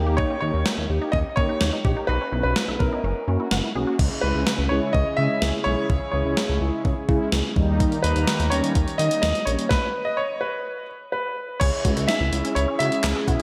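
Wistful yet upbeat, this 126 BPM synth-pop excerpt, cut from a longer piece, sets a clear, polished baby grand piano melody over a gated 80s drum machine with a thumpy kick and gated-reverb snare, a glossy chorused synth bass, and dark, brassy synth brass accompaniment touched with chorus and slapback echo. A squelchy, resonant blip pluck flickers arpeggios in the background at the start and returns at 11.6 s, while a shimmering, airy pulse-width pad enters at 4.0 s with sustained chords. A stop from 9.7 s breaks the groove, and a lush hall reverb gives the mix a big arena sound.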